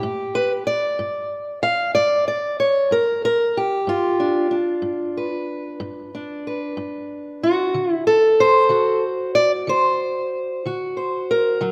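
A fingerpicked steel-string acoustic guitar carries this laid-back, gritty slice of acoustic country blues on its own, its dark, boxy tone sitting up front with audible finger squeak. At 62 BPM in a straight 12/8, it spans G2 to F5 and moves from G7 to D7 at 7.7 seconds. Close, detailed microphones catch the playing within a moderate stage reverb, and this short passage is cut from a longer piece.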